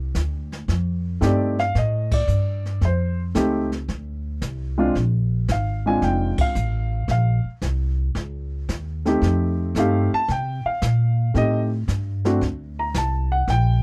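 A dark, mellow baby grand piano carries the melody from 1.2 seconds, up front with a short sustain, in this swinging, sophisticated jazz piano trio excerpt at 112 BPM in F mixolydian. Beneath it, a woody pizzicato upright bass sits close, while a brushed drum kit with dark cymbals, a medium-tuned snare and a boomy kick plays with a natural small-room sound. The dry, close 1970s-style studio recording moves through chords such as F9, Bb9 and Bbm, with the whole band hitting accents at 2.0 and 6.3 seconds.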